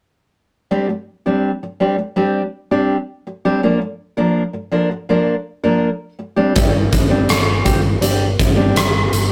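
Cathartic and anthemic, this short cut from a longer quiet-loud alternative rock piece moves at 82 BPM in a straight 4/4, opening with a full-bodied, up-front dreadnought acoustic guitar fingerpicking arpeggios over Gsus4 and Bb chords. At 6.6 seconds a growling, overdriven electric bass with a round tone enters on a low G alongside a huge arena drum kit, its punchy kick, hi-hat and rim clicks set up front with a hall-like character. The rough rehearsal-room sound carries moderate studio reverb.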